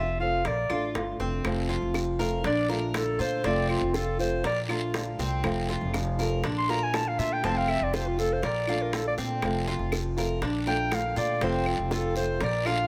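A close-miked clarinet plays a classical-style solo with slapback echo over fingerpicked nylon-string guitar, metallic double-string tres arpeggios and a dark, thumpy pizzicato upright bass up front, while tight, high-tuned bongos enter at 0.5 seconds, woody claves at 0.7 and a raspy guiro at 1.4, filling out this relaxed Cuban son and guajira excerpt at 120 BPM in F major that alternates between Bbmaj7 and F under light reverb.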